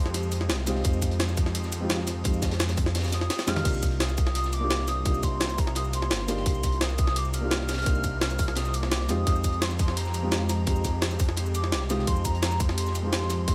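A menacing, detuned saw bass with tube saturation sits up front in this soulful, dreamy liquid drum and bass excerpt at 171 BPM, moving over Fm9, Cm11 and back to Fm9. A hollow, woody clarinet-like synth lead with lush chorus, delay and vibrato carries the melody, sounding briefly at the start and returning at 3.1 seconds. A soft felt-muted upright piano with audible action noise sits in the background alongside a very quiet, glassy FM pad. Gritty, pitched-up jungle sampler drums with a high-tuned snare, crashes, rides, shaker and toms layer over a dark, saturated breakbeat kit, with a tight electronic kick entering at 0.8 seconds and a drum fill at 3.3 seconds.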